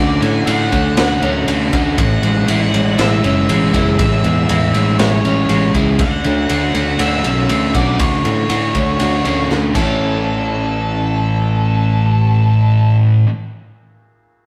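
A rough rehearsal-room recording steeped in wet stone reverb frames this hazy, dreamy excerpt of shoegaze and dream pop rock, where a dark octave-fuzz lead guitar carries the melody over a thick fuzz guitar riff and a hollow-body overdriven guitar riff, a shimmering twelve-string acoustic guitar picks delayed arpeggios in the background, a growly, punchy fingered bass holds the low end, a barely audible detuned sawtooth pad stops at 1.9 seconds, and a gritty garage drum kit with a boomy kick, a rolled-off top and a pumping room sound plays a fill at 9.5 seconds before stopping at 9.9 seconds.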